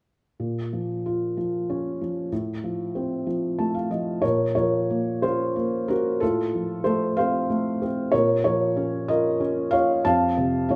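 Classical solo piano in a lyrical, rubato 6/8, dark and melancholic, played on a felt-muted upright that sounds soft, mellow and intimate, with audible action noise and an up-front, vintage character. The piano carries the whole piece from 0.4 seconds, moving between minor and major chords, with a brief fill from 3.3 seconds leading into a new section at 4.2 seconds that closes on a major chord at 10.0 seconds. A wet recital hall reverb surrounds the playing in this short cut from a longer work.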